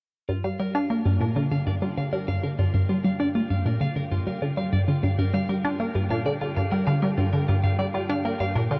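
Bathed in a huge, long-tailed ambient reverb, this hypnotic, mysterious stretch of sequencer-driven space music is carried by a squelchy, detuned blip pluck up front, its bright, resonant riff colored by phaser and delay. A dark, clean electric guitar picks delayed arpeggios over a Gm7 chord from 0.3 seconds. From 1.2 seconds, a breathy, wind-like tuned noise texture fades in and lingers airily in the background.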